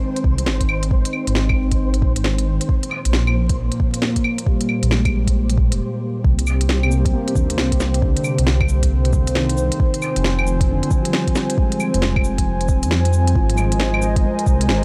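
A swung 16th-note groove at 135 BPM in 4/4 drives this rainy, wistful future garage passage in C minor, cut from a longer piece. An overdriven electronic kick with a soft body sits up with the detuned sawtooth bass, which rumbles deep and dark with a beating edge. Around them, an organic electronic kit adds a woody snare, smooth hi-hats, cabasa and claves in a small room. Sustained chords come from a warbling, nostalgic tape-like pad with chorus and its own reverb. A felt-muted upright piano sits behind it, boxy and intimate with audible action noise and tape echo, while the piano, pad and bass all pump with the sidechain. A flickering, grainy granular texture shimmers until a short break at 5.8 seconds, then returns at 14.3 seconds. The Ab to Bb5 harmony shifts to Cm at 6.2 seconds, moves to Fm at 9.8 seconds and returns to Ab at 13.4 seconds, all under gritty vinyl crackle.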